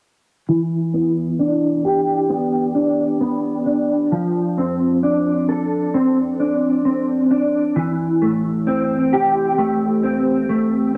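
At an unhurried 66 BPM in a straight 4/4, this short dream pop passage drifts by with a floating, blissful mood. A single mellow electric guitar carries everything on its own from 0.5 to 11.0 seconds, fingered cleanly in a range from E3 to A4. Its tone is dark and compressed, set up front, and coloured by ensemble chorus, a low-pass filter and tape echo, with a filter sweep running across the whole passage. The harmony moves gently from Em7 to F6 and then to Am7. A moderate small room reverb and the soft grain of a home cassette recording give the sound an intimate, slightly worn character, and the clip is cut from a longer piece.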